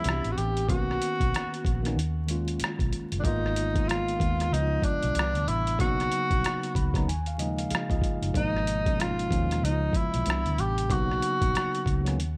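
A breathy tenor saxophone carries a sultry, introspective melody over mellow tine electric piano and a gritty, pitched-down boom bap drum kit from the start of this 94 BPM R&B and neo-soul excerpt, with a swung sixteenth-note feel and a dark, round, foam-muted electric bass joining at 0.1 seconds. The sax is intimate and whispered, with subtone, vibrato and scooped notes, while the clean electric piano, heard through its built-in speakers, moves through Cmaj9, Bmaj9, D#9sus4, G#m69 and C#7 and adds a fill at 6.4 seconds. The thumpy kick, rim click and hi-hat sit up front with compressed, tape-warm grit, over a bed of vinyl crackle.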